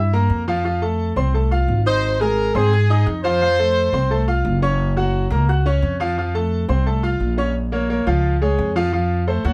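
Fiery and passionate, this short latin excerpt cut from a longer piece moves at 174 BPM in a straight 4/4, with a bright concert grand piano comping brilliant, open chords with deep bass and long sustain while a woody, thumpy pizzicato upright bass on gut strings holds the low end up front. A punchy horn section with light vibrato states a brief pop-style melody from 1.9 to 4.2 seconds, riding over harmony that shifts from a rootless C7 through F, Abadd9 and Gb before a closing turn to Bbm, Db and F7. Close, detailed miking with light reverb keeps each part present and immediate.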